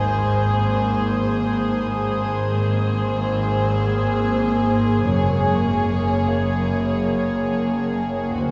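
This uneasy, mysterious cinematic passage opens at 74 BPM in a straight 4/4, with bowed string sections entering together over a detuned, chorused drone whose sawtooth-and-sine tone carries moving overtones in the background. A dark, intimate violin section carries the soft-attacked melody sul tasto with light vibrato, while a floating, pure studio violin section traces a second line beneath it and a rich viola section holds an accompaniment. Low in the background, a woody double bass section and a cello section, both played sul tasto, anchor the bass as the harmony moves from Abadd9 to F#add9 at 5.1 seconds. A very quiet, bright concert harp rings out a fingerpicked riff, a second harp adds a barely audible texture, and a high, vibrato-laden violin texture shimmers faintly until 4.6 seconds. The whole is bathed in a long church reverb with a dim top end, giving this brief fragment of a longer piece a hushed, cavernous atmosphere.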